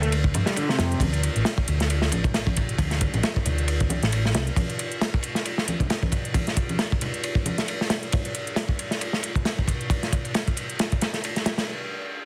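This energetic, swaggering breakbeat cut opens with an overdriven electric guitar riff on a D5 chord, its tube-saturated, picked tone roughened by vintage 12-bit sampler grit and digital delay as a filter sweep runs across it until it drops out at 1.0 seconds. Set in D minor at 135 BPM with a 56% swing on the sixteenths, the groove rests on a crunchy breakbeat drum kit sitting up front, its tight kick, medium-tuned snare and dark ride cymbal sounding gritty and saturated with a rolled-off top. An electronic hi-hat adds layered, metallic, overdriven ticks re-recorded in a large room, while ringing congas played with soft hands sit in the background until 7.6 seconds. A hollow-body short-scale picked bass gives a round, amped low end before falling away at 4.5 seconds, leaving the drums and percussion to drive the rest. The whole mix has a heavily compressed, radio-like sheen with light reverb, and it is cut from a longer piece.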